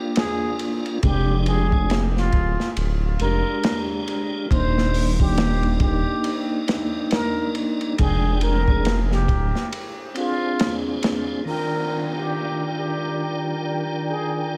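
A slow, swung trip hop groove at 69 BPM is driven by a crunchy breakbeat kit, its gritty, saturated drums sitting up front with dark cymbals, a tight kick and a rolled-off top, playing from 0.2 s until 11.3 s. Beneath it, a dark detuned saw bass enters at 1.0 s with a deep, rumbling, beating tone, the loudest part of this brooding cut from a longer piece. A piping, scooped tonewheel organ carries the chords throughout, lightly overdriven and colored by chorus vibrato, harmonic tremolo, tape echo and a vintage 12-bit sampler grit, moving through jazzy harmonies from Gm7 and Fm69 to Ebmaj7. Over it, a plunger-muted trumpet sings a breathy, jazz-style melody with wah-wah inflections, scooped notes and light vibrato, trailed by tape echo. After a break, a dark, woody violin section enters at 11.5 s with bowed sustained chords under a low-pass filter sweep, while a faint electronic downlifter sinks in the background. 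The whole mix is dreamy and soaked in plate reverb, heightening the dark mood.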